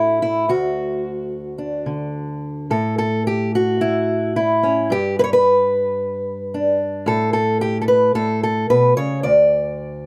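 A fingerpicked acoustic archtop guitar carries this short folk piece entirely on its own, sitting up front with a warm tone and an audible finger squeak. The mood is peaceful, moving at 110 BPM in a straight 4/4 feel, with the guitar ranging from D2 up to D5. The opening passage holds off on a settled harmony before a second section begins at 2.7 seconds, moving through A5 and G, then briefly dropping away from chords and landing on A at 8.2 seconds. Close, detailed miking with little reverb keeps the instrument intimate and present. The recording is cut from a longer piece and ends at 10.1 seconds.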